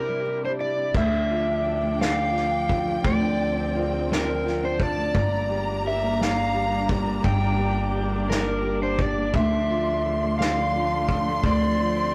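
In a straight six-eight, this dramatic, aching pop ballad opens on an overdriven electric slide guitar carrying the melody up front, over a fingerpicked dreadnought acoustic guitar and a lush, bowed symphonic string section holding smooth sustained chords. At 0.9 seconds a close, expressive violin section adds a high second line, a woody pizzicato upright bass takes the low end, and a distant, roomy drum kit played with soft mallets brings a punchy kick, snare, ride and crash. The sound is that of a rough rehearsal room with moderate reverb and warm saturation, and the passage is cut from a longer piece.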